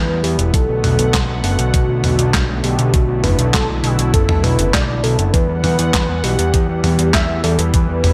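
A straight 4/4 pulse at 100 BPM drives this moody synthwave fragment in E minor, cut from a longer piece. A thumpy, sampler-style electronic kick sits underneath from 0.5 seconds, while a detuned 8-bit digital drum machine, entering at 0.2 seconds, adds handclaps, hi-hat, toms and an up-front, medium-tuned snare bathed in gated reverb. The fat, saturated analog bass, built from detuned sawtooth and square waves with a fast filter pluck, pumps against the sidechain from E1 to E2 and stands prominent in the mix. A vintage, warbling pad of sawtooth and triangle tones holds soft-attack chords with a long release, its chorus and sidechain pumping giving it a gentle breathing motion. A velvety unison lead with vibrato sings the melody between F#4 and E5, coloured by chorus, delay and a cassette-tape sheen. The harmony moves from Em to Bm7 and settles on Emadd9 at 5.3 seconds, all within a light reverb that keeps the mood driving.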